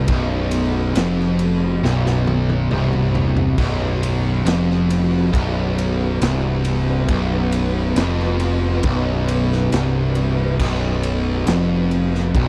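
A dry cut from a longer stoner and doom metal piece, hypnotic and sludgy, where a compressed, double-tracked fuzz guitar and a bright, overdriven distorted electric guitar sit up front on a low riff over a growling, direct-and-amped picked electric bass, while a gritty, saturated garage drum kit with a pumping small-room sound, punchy kick and rolled-off top comes in at 0.1 seconds and plays a fill from 1.8 to 3.6 seconds, and a very quiet vintage string machine voicing violas holds soft-attack sawtooth chords with ensemble chorus underneath.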